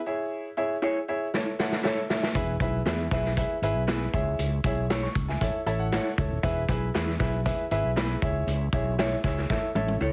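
The clear baby grand piano opens this joyful, uptempo 1960s-style soul cut, sounding intimate and up front with its action noise audible as it comps in the upper register from the first moment. At 118 BPM in a straight 4/4 feel in E major, the harmony circles through C#m, A and E, and the piano steps forward with a fill at 5.4 seconds. An electric guitar through a small old amp adds dark, slightly broken-up picked stabs with a lo-fi edge, while a vintage drum kit enters at 1.3 seconds with a fill, its punchy kick, medium-tuned snare and gritty, saturated tone rolled off at the top. A fretless electric bass joins at 2.3 seconds, growly and punchy beneath the groove. The mix is dry and heavily compressed, giving the whole clip a radio sound, and it is cut from a longer piece, closing on another drum fill.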